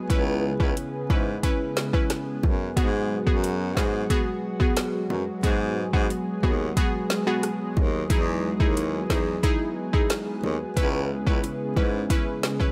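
A lush, thick unison pad opens this tough, sultry dancehall excerpt in G# minor, its warbling, vintage sawtooth-and-square tone swelling in slowly on sustained chords with chorus and sidechain pumping. Within a moment a glassy wavetable pluck joins with crystalline, detuned fast attacks that then decay, its bright sound shaped by a filter sweep, chorus and the same pumping, while an electronic afro-pop drum kit sets a straight 90 BPM groove in 4/4 with a deep kick, woody snare, rim click and metallic hats placed up front. Carrying the bass line is a clear baritone saxophone, played with light vibrato in a classical style, prominent and forward until 12.0 seconds. Round, low-tuned acoustic bongos enter at 1.1 seconds, very quiet and set in a small room. The harmony moves from C#m7 to G#m7, then Emaj7 and back to C#m7, all under light reverb and digital ambience.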